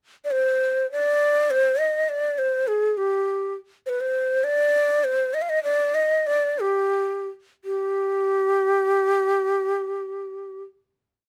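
A breathy, bright end-blown reed-cane ney enters alone at 0.2 seconds in this short, complete Arabic maqam piece in triple time, carrying a longing, hypnotic modal melody up front with vibrato, tongued notes and ornaments, slowing down from 3.8 seconds before arriving at its final note at 7.6 seconds, heard through close, detailed microphones with light reverb.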